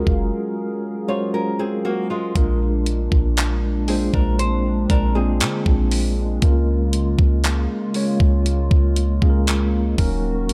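A dry, dark production frames this sensual contemporary R&B fragment, heavy with longing. A mellow tine electric piano accompanies as a hollow, flute-like pad with chorus holds chords moving from Gbmaj9 through Bb7 and Db6 to Ebm7, while a deep, boomy 808-style bass and a thumpy, sampler-style drum machine of kick, hi-hat and handclaps sit up front, with a break from 0.3 to 2.4 seconds. Between 1.1 and 6.4 seconds, a fingerpicked flamenco guitar adds warm acoustic arpeggios touched with delay.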